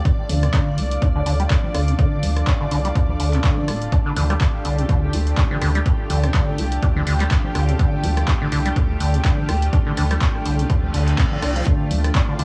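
Acid house at 124 BPM in D minor with a 16th-note swing, raw and gritty, set over a single D minor chord in this short cut from a longer piece. An up-front, punchy electronic kick and a tape-warm analog drum machine with congas, handclaps, hi-hat and rim click drive a squelchy, resonant sawtooth acid riff with overdrive, lush chorus, analog delay and a filter sweep, while a thick, saturated sine sub bass pumps beneath. A bright vintage string machine holds sustained chords as a moody, warbling ambient pad with built-in reverb adds sustained texture, and a reverse cymbal enters at 10.8 s, all captured in a dry, gritty hardware recording on cassette tape.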